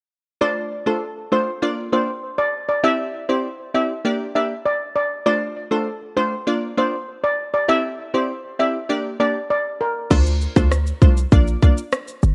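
A shimmering steel pan, played with medium rubber sticks, leads this tough, hypnotic dancehall fragment cut from a longer piece, over crisp, detuned wavetable chord stabs with a bright filter pluck cycling through Dm7, Bb, Cadd9 and Gm. At 10.1 seconds, just after the pan falls silent, a punchy sine-based 808-style bass with a noise layer and a tight electronic island pop kit of kick, rim click, shaker and crash arrive up front, the drums roughened by vintage 12-bit sampler grit. Light reverb and the warbly pitch drift of worn cassette tape colour the sound.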